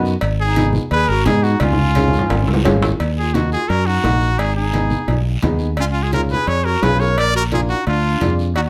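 A clear trumpet with slapback echo carries the melody over a breathy, distant clarinet, a dark, woody upright piano and a round, punchy fingered electric bass, while raspy guiro and low-tuned congas join in the background alongside ringing cowbell and timbales in this passionate, danceable cumbia fragment, with a drum fill from 1.6 to 3.0 seconds leading into its second section under light reverb.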